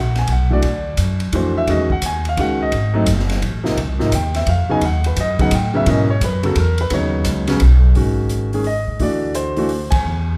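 A clear concert grand piano leads this late-night, moody jazz piano trio excerpt, taking a solo through the first 8.0 seconds with lush extended chords and a natural tone that reaches down into a deep bass register. The feel is a swinging waltz in three, carried by an up-front pizzicato upright bass with a woody, warm sound and steel strings. The acoustic drum kit joins at 0.2 seconds, sitting further back, with dark cymbals, a high-tuned snare and a boomy kick heard across hi-hat and ride. The harmony moves through rich colors before the whole band hits an accent at 9.9 seconds near the close of this fragment of a longer piece. A moderate recital hall reverb gives the trio the air of a church or concert hall, while the drums carry their own small-room character.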